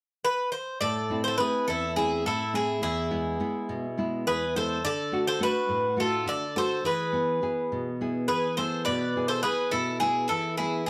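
Greek folk in a brooding, moody 7/8 at 209 BPM in eighths, cut from a longer piece, where a bright, metallic lead bouzouki with double strings plays the melody up front from 0.2 s, joined at 0.8 s by a second bouzouki's picked line beneath it and a full-bodied, fingerpicked nylon-string guitar with audible finger squeak, also up front, carrying the accompaniment through Am, E, D and E in a moderate studio reverb.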